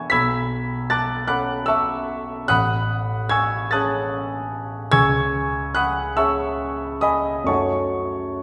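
A warm, present grand piano opens this brief excerpt of nocturnal, wistful impressionist classical solo piano, drifting in a slow, rubato 6/8 at around 44-52 BPM through Bm9, Amaj9, C#7sus4 and F#m6 across a range from A1 to B6, its up-front tone bathed in a lush scoring-stage reverb that sets the room's sound further back.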